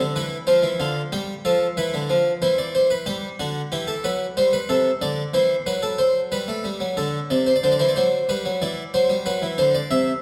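A plucked, Flemish-style harpsichord opens this short cut from a longer classical piece, a baroque-style two-part invention with a joyful, elegant mood. The harpsichord plays solo throughout, its brilliant tone doubled by octave strings and set up front, ranging from C3 to E5. At 93 BPM in a straight 3/4, the harmony moves through Dm7, G7, C/E and G, then on to Am7/G and D7 before settling back on G by the end of the opening section at 7.0 s. A second section then alternates between D7 and G until the cut ends just past 10 seconds. The instrument is tuned to A4 = 439 Hz and sits in a moderate recital hall reverb that gives the lines a graceful sense of space.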